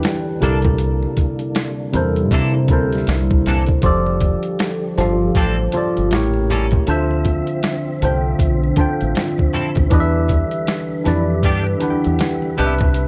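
Soulful and sultry, this 79 BPM neo-soul R&B excerpt swings gently on a gritty, pitched-down boom bap sampler kit with a thumpy kick, sitting up front beside a worn, slightly out-of-tune tine electric piano through a phaser, while a round, dark fingered dub bass and a bright, scooped clean guitar with lush chorus enter at 0.4 seconds, a fat, lightly overdriven tonewheel organ with key click and slow rotary speaker holds chords in the background, very quiet low-tuned congas add texture, and the harmony moves from C13 through A7b9 and Dm9 to Cmaj7 in a digital ambience.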